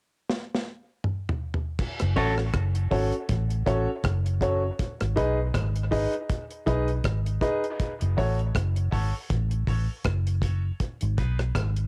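Dub reggae at 80 BPM in 4/4 with a swung sixteenth-note feel, this short cut from a longer piece sits in F# dorian and carries a deep, meditative mood. A deep reggae drum kit opens at 0.3 seconds with a fill across kick, snare, toms, rim click, hi-hat and crash, its sound dry, dark and rolled-off on top, with a tight kick and a medium-tuned snare sitting up front through cassette tape coloring. At 2.0 seconds a vintage muted fingered electric bass enters low in its register, round, punchy and foam-muted, the loudest part in the mix. A bright, twangy electric guitar at the edge of break-up flashes by in a brief picked figure, colored by tape and dub echo, while a clear, woody upright piano plays stabs through a high-pass filter and dub echo, with a filter sweep on the piano from 4.8 seconds to the end. The harmony moves between F#m and G#m under light reverb, giving the whole a homemade cassette character.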